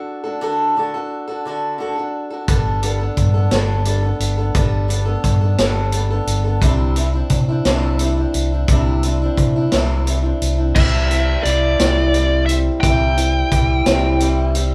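A slow, swaying 6/8 lilt carries this hopeful, open-road folk rock and heartland rock excerpt. It opens on a boxy old ladder-braced acoustic guitar, picked up front with audible finger squeak, before a round, amped fingered electric bass and a vintage drum kit with punchy kick, medium-tuned snare, hi-hat, crash and dark, rolled-off cymbals join at 2.5 s, as the harmony moves from D through Gadd9 and Cadd9 to C. At 10.8 s a bluesy, distorted lead guitar sings a short high melody, and the band, playing live in one room, sits in a moderate large studio reverb.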